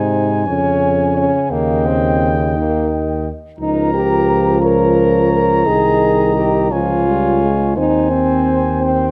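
A brass quintet opens together at the start of this classical excerpt, all five voices sounding from 0.0 to 9.1 seconds in a noble, triumphant mood. The music moves slowly in 6/8 at 57 dotted-quarter beats per minute with a free, rubato feel. It is in A-flat major, passing through Db/F, Eb, Db69, Ab/C and Db before settling on Ab/Eb. A mellow trumpet carries the high melody with light vibrato and a smooth top, and a flugelhorn below it adds a second line in the same gentle, vibrato-touched manner. The French horn is the most prominent voice, a vintage-toned accompaniment with soft attacks and warm color. The euphonium sits in the background as a second accompaniment, while the bass trombone anchors the low end up front with a roomy, distant quality and light vibrato. Close, detailed microphones capture the ensemble within a moderate recital hall reverb that lingers about 1.5 seconds.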